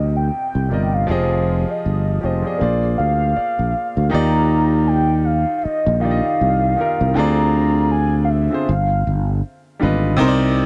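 A dry, close 1970s-style studio sound with small-room ambience frames this smooth R&B fragment at 79 BPM in Eb major, where a velvety, chorused synth lead with vibrato carries the melody until 9.4 seconds over a clear, intimate baby grand piano with audible action noise that plays a fill from 3.0 to 4.1 seconds, while a growly, up-front fretless electric bass with lush chorus anchors the swung sixteenth-note feel through chords such as Cm11, Ebmaj9 and G7b13.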